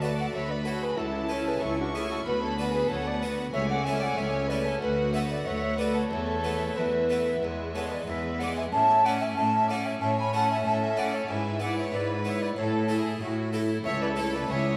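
Festive and lively, this baroque-style concerto movement in straight 4/4 sets an airy, chiffy alto recorder on the melody beside a focused chamber violin section, while a lush studio violin section carries a second line over a full, plucked French-style harpsichord, a rich viola section fills the middle and a close symphonic cello section holds the bass, within a reverberant scoring-stage acoustic.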